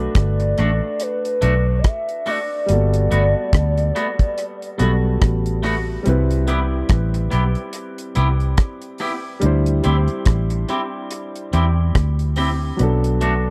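A swung sixteenth-note lovers rock reggae groove, sweet and smooth, rides on a deep acoustic drum kit of tight kick, hi-hat and rim click touched with tape echo, alongside a dark, round, foam-muted fingered electric bass sitting up front, while a warm grand piano with tape echo and clean, twangy picked electric guitar stabs bathed in spring reverb fill out a Gmaj9 to Cmaj7 to D9sus4 progression, and a hollow, woody clarinet-like synth lead with chorus, vibrato and tape echo sings softly until 5.7 seconds, all captured as a dry, close 1970s-style studio recording cut from a longer piece.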